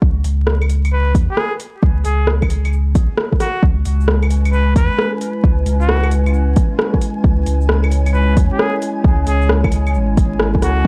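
Future garage at 133 BPM in C# minor with a 16th-note swing, this nocturnal, melancholic excerpt pairs an up-front overdriven kick and a deep house kit of metallic hats, claves, rim click and shaker with a round, tube-saturated sub bass that pumps with sidechain movement, while a nasal, breathy trumpet with straight mute sings an intimate, jazz-style line through analog delay from 0.9 seconds, a dark, warbling tape-like pad settles onto C#m7 at 3.9 seconds, and a faint, flickering grainy texture drifts in behind at 4.1 seconds, all within a dry, gritty recording dusted with vinyl crackle.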